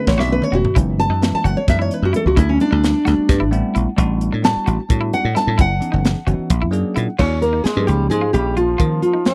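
Slick and soaring, this excerpt of electric jazz fusion moves at a brisk 262 BPM in 7/8 with a straight feel, captured in a dry, close 1970s-style studio sound with little reverb. A full-bodied, fingerpicked nylon-string guitar carries the melody up front and takes a solo from the start until 7.2 seconds, over a bell-like tine electric piano with phaser that adds short fills of its own. Underneath, a punchy, foam-muted thumbed slap bass and a crisp fusion kit with a high-tuned snare, dark cymbals and toms drive the groove, the drums opening with a quick fill. A clean, compressed semi-hollow electric guitar with subtle chorus sits low in the mix, adding bright picked stabs. At 7.2 seconds the harmony shifts from a run of lush suspended thirteenth chords through an altered dominant to an Eb9sus4, and a buzzy, thin trombone with a metal mute enters with a second line.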